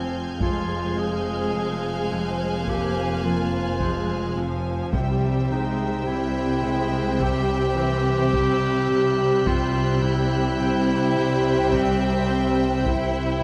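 A bright, close-miked clarinet carries a second line over a slow, tense and eerie suspense film cue. A lush violin section sings the vibrato-laden melody beside a clear, focused second violin line. A smooth high violin texture hovers above, while an even viola section holds the accompaniment. A very quiet ringing harp plays a fingerpicked riff, and a dark cello section sits in the background with a rich double bass section beneath. Hard-stick taiko drums enter at 0.4 seconds, and a warm, very quiet second harp texture joins at 3.8 seconds before the harmony moves from F minor to C at 4.9 seconds, all set in a moderate scoring-stage reverb with close, detailed miking.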